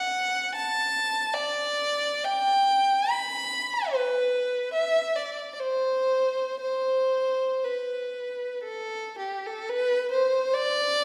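Lyrical and nostalgic, this short excerpt from a longer classical work features a single violin playing alone in an expressive, free style. The tempo moves flexibly between 48 and 76 BPM in a rubato 3/4, giving the line a breathing, unhurried quality. The bowed violin sounds rich and smooth, with an even tone and vibrato, sitting up front while ranging from G4 to B5. A wet recital hall reverb surrounds it, and the listener seems placed further back in the room, lending the sound a sense of space. After the opening passage, a new section begins at 9.7 seconds and carries through to the end at 11.0 seconds.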